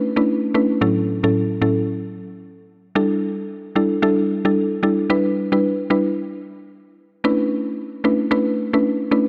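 A woody, round mallet-like synth pluck with chorus plays alone and up front through this sultry, hypnotic afrobeats fragment at 112 BPM, its percussive, fast-attack, decaying notes swung on the sixteenths as it moves through Bm11, F#m7/A, A7sus4 and Em7 before returning to Bm11 at 7.2 seconds, all set in light reverb within a dark, warm production.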